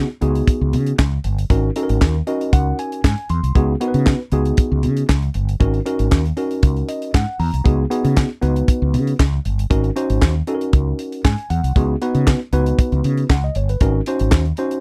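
A worn, slightly out-of-tune tine electric piano and a round, punchy fretless bass open this danceable early-eighties boogie funk excerpt at 117 BPM, alternating between C#9sus4 and G#9sus4 chords, with a tight funk drum kit joining at 0.2 seconds on handclaps, hi-hat, a tight kick and a high-tuned snare. The electric piano adds short fills along the way, first at 2.0 seconds, while the dark bass and dry acoustic drums sit up front in a close studio sound with little reverb.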